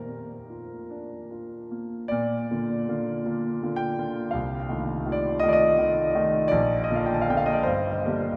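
A warm, polished grand piano sits present and up front, bathed in the long, wet bloom of a cathedral-sized reverb that lets each note hang in the air. This is a short fragment of a romantic nocturne for solo piano, tender and dreamy in mood. The piano carries everything alone from the first moment to 8.4 seconds, spanning from deep bass notes up into the upper register. The pulse moves slowly and freely with rubato, breathing rather than marching. The harmony drifts from a home chord through a dominant seventh around 4.4 seconds, settles back, and turns toward a minor colour near the close, as if the phrase continues beyond this cut.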